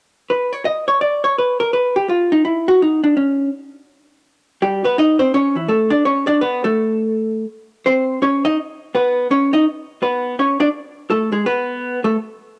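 Cut from a longer piece, this home cassette recording has a smoky, moody air, with a moderate spring reverb and digital ambience around a single vintage hollow-body jazz guitar. The electric guitar takes the solo from 0.3 s to 12.2 s, its dark, clean, picked tone compressed, tape-tinged and up front as it ranges from E3 to D#5. The jazz swings at 166 BPM in 4/4 in C# minor, drifting through augmented and suspended colours and chordless gaps before settling on G#m at 11.1 s.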